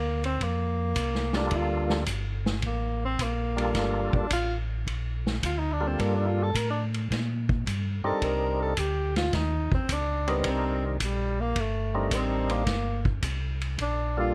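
A breathy, distant tenor saxophone solo opens this bluesy, soulful soul jazz organ trio excerpt in G minor at 108 BPM, swinging over a mellow, round tonewheel organ bass with chorus vibrato and slow rotary speaker, while a vintage drum kit with dark cymbals and a punchy kick joins at 0.2 seconds. A second, percussive tonewheel organ enters at 1.3 seconds, lightly overdriven with key click and slow rotary, adding a melodic voice as the harmony moves from Gm7 to Cm7 and back. The sax shows light vibrato and scooped notes, and the whole sits in a dark production with light reverb.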